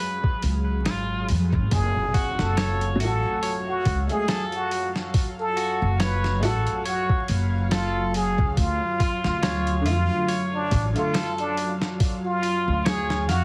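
A mellow string machine voicing cellos opens this hypnotic, smoky trip hop piece, holding soft-attack sustained chords with an ensemble chorus shimmer. Alongside it, a twangy electric guitar at the edge of break-up picks arpeggios through tape echo. Within the first second a gritty, pitched-down boom bap sampler kit with a thumpy kick and a medium-tuned snare settles in at a slow 70 BPM with a light swing, and a woody pizzicato upright bass sits up front beneath it in F# harmonic minor. At 1.7 seconds the harmony moves from C# to F#m, and a close-miked trumpet with a plunger mute takes the jazz-style solo melody, its wah-wah tone roughened by 12-bit sampler grit and tape echo, while a faint electronic impact sounds in the background. A worn, slightly detuned upright piano adds boxy, short-sustain accompaniment with tremolo from 3.0 seconds, and the chords turn to Dm at 8.6 seconds. The whole mix carries a heavily compressed radio character with vinyl crackle and a small room ambience, cut from a longer piece.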